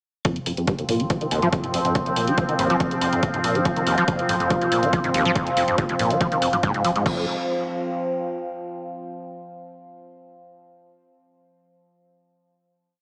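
Industrial and dark, this short piece of driving peak-time techno sets a punchy four-on-the-floor electronic kick and an overdriven, layered kit of hats, toms and crash under a squelchy, resonant acid saw line with accents and slides looping against the bar, a detuned drone of moving overtones, a round, very quiet sub bass rumbling between the kicks, and a moody, wave-folded ambient pad that fades in from 2.7 seconds, with the acid line, drone, pad and kit pieces pumping inside a lush hall and a small-speaker sound before the piece settles on a final chord at 7.1 seconds.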